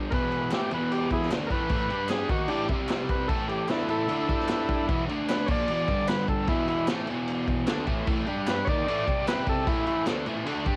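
An overdriven guitar riff kicks off this swaggering, raw garage rock excerpt at 151 BPM in a straight 4/4, joined almost at once by a buzzy combo organ with light vibrato taking a solo melody, a vintage drum kit with a punchy kick, a high-tuned snare and dark cymbals, and crisp, saturated group handclaps sitting in the background, all carrying the light reverb and lo-fi character of a cassette home recording.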